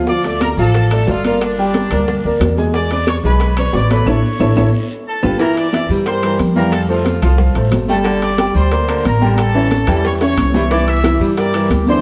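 A straight 4/4 salsa groove at 181 BPM drives this danceable, passionate passage cut from a longer piece, with a thumpy, dark upright bass played pizzicato on gut strings sitting up front alongside a clear grand piano with long sustain carrying the accompaniment. Congas with a thick, high-tuned skin and soft hands, ringing metal-shell timbales, raspy guiro and grainy maracas fill out the background, while tight bongos and woody claves tick along very quietly. A bright, punchy trumpet section with vibrato and a tight, vintage pop-style attack carries the melody over a minor-key progression that opens on Dm and moves through Gm and E7. A band accent arrives at 4.1 seconds, with a drum fill leading into the second section at 5.4 seconds, where a smooth-topped baritone saxophone enters in the background with a low second line. Another drum fill lands near 10.2 seconds, and the whole band sits in a moderate plate reverb, heard from further back in the room.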